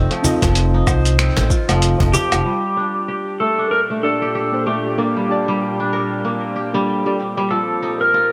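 Organic downtempo with an earthy, hypnotic mood and a swung 16th-note feel, cut from a longer piece. A crisp, ringing kora plays arpeggios up front over dark, muted felt-like synth keys with chorus and sidechain pumping. A woody pizzicato upright bass, a snappy cajon in the background and a soft, overdriven electronic kick appear only briefly at the start, while a gritty, tape-toned sampler-style kit of cabasa, finger snaps, hi-hat and woodblock carries on beneath them. A clean, twangy lap steel takes the melody from 2.1 s with slide and volume swells, and a tense, nasal bowed-like drone joins at 3.4 s, inside a lush hall reverb.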